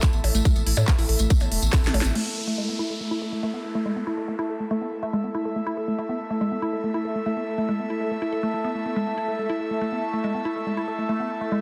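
A straight 4/4 pulse at 141 BPM drives this intense, hypnotic psychedelic trance excerpt, where a tight, up-front electronic kick, a techno kit with cracking snare, smooth hats, handclaps, crash and percussion blips, a jingly tambourine and a round, deep analog bass play through a drum fill from 1.7 to 2.2 seconds and then drop out, while a woody, wave-folded pluck riff with tape echo, a bubbling, resonant stepped-filter texture holding an A chord and an airy, breathy pad run from the start through to 11.6 seconds, joined by a brief downlifter at 2.2 seconds, all under a dense, heavily limited master.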